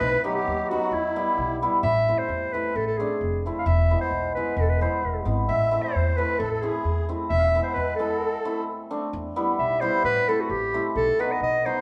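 A live band in one room fills a large studio with lush reverb in this festive, soulful klezmer excerpt, set in A harmonic minor at 132 BPM in a straight 2/4. A classical-style clarinet, warm and up front, carries the melody from start to finish. A reedy, shimmering musette accordion with a boxy small-room tone adds a second line, heard briefly at the opening and again from 5.5 s. Beneath them, a growly, woody pizzicato upright bass on steel strings anchors the low end, while a ringing hammered dulcimer, also up front, supplies accompaniment. The harmony moves through Am, Em, E and B, with a break at 8.2 s before the final section.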